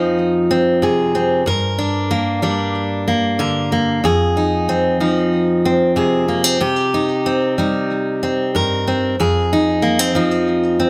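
A fingerpicked steel-string acoustic guitar opens the recording alone and carries this short folk piece, cut from a longer work, for its full 10.9 seconds. The mood is warm and nostalgic, moving at 93 BPM in a straight 4/4. The jumbo-bodied guitar sounds full-bodied and up front, spanning from F2 to Bb4, with audible finger squeak giving the performance an intimate, human touch and a digital delay adding an echo to its notes. The harmony circles through Fm7, Gm and Cm, returning to Fm7 at 9.2 seconds, which lends the passage a gently wistful colour. A light reverb surrounds the instrument, keeping the sound close and unadorned.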